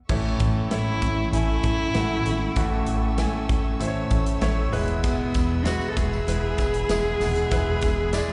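Uplifting and hopeful, this short cut from a longer piano-driven pop piece at 97 BPM in A major sets a dark, woody bowed cello melody up front over a brilliant concert grand, a picked jumbo steel-string guitar riff with finger squeak, both carrying slapback echo alongside the cello, a plucky, funky analog bass, a punchy, polished acoustic drum kit, lush background strings and a jingly tambourine that enters at 5.0 seconds, all heard as a live gig through a venue's PA with recital hall reverb as the harmony moves from A to E.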